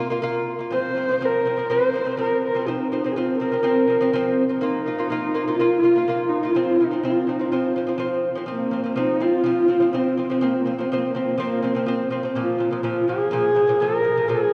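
In a straight 4/4 at 124 BPM, this vast, windswept Mongolian folk passage in F yu mode opens with delicate fingerpicked arpeggios on an up-front acoustic lute with double gut strings, joined at 0.7 seconds by a husky, woody horsehead fiddle carrying the bowed melody with vibrato and portamento, all set in the long, wet reverb of a cathedral-like hall.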